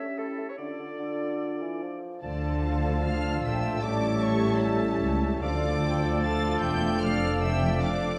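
A rubato 4/4 pulse at 150 BPM drives this urgent, stormy classical passage in D minor, cut from a longer piece, as woodwinds open over A7 and Dm harmony: an airy flute ensemble, a bright oboe and a distant clarinet carry second lines while a low bassoon accompanies beneath mellow sustained French horn chords. At 2.2 seconds the strings and brass enter, with a rich, focused violin section taking the high melody above a lush second violin line and a very quiet viola accompaniment. Clear trombone chords and trumpet stabs on A4 join in, while cellos with an up-front double bass section anchor the bass. Moderate scoring stage reverb surrounds the dark production.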